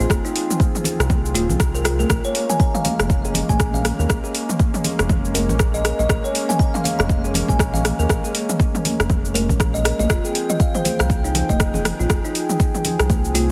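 A driving, earthy afro house groove at 120 BPM with a swung 16th feel opens on a smooth, warbling analog pad carrying chorus and vintage sampler grit, a woody, airy kalimba arpeggio trailing tape echo, and a round, dark analog bass, all three pumping against the sidechain. An overdriven deep house kit with metallic hats, cabasa, rim clicks and toms sits up front beside a deep, layered electronic kick from 0.1 s, while bright, high-tuned congas play in the background. The harmony moves from Fm to Bbm7 at 2.1 s and back to Fm at 10.1 s, all set in light digital ambience with a heavily compressed, radio-like sound in this section cut from a longer piece.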